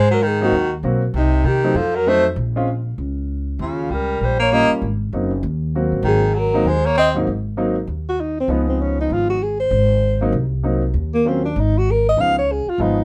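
A mellow, close-miked alto saxophone carries the melody with vibrato and a soft subtone attack, joined from the start by a breathy baritone saxophone with scooped notes and a growly, woody upright bass in this relaxed small-group swing and bop jazz cut from a longer piece, moving at 196 BPM in 4/4 with a swung feel in Ab mixolydian. A clear concert grand piano with deep bass enters at 0.4 seconds to comp through chords such as Ab9, F7b9 and Eb9. The baritone saxophone drops out at 7.1 seconds, leaving alto, bass and piano to swing through the second pass of the theme, all under a light reverb.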